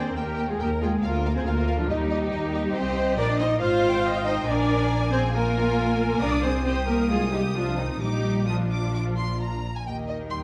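Driven by a quick 4/4 pulse between 128 and 142 BPM yet played with rubato, this spirited, graceful classical-period movement for string orchestra is a brief slice of a longer piece, with every section sounding together from 0.0 s to 10.4 s. The first violins carry the melody between Eb5 and Eb6 with a close, smooth vibrato, while the second violins weave a lush, warm second line beneath, their top end kept smooth. Violas fill in the accompaniment from a more distant position, and the cellos and double basses share the bass, the basses sitting up front with a rich, smooth bowed tone. The harmony moves from Eb through Cm, Fm/Ab and Bb7 before settling back on Eb at 9.9 s. A wet recital-hall reverb, a dark, warm production and a vinyl crackle lend the whole a mellow glow.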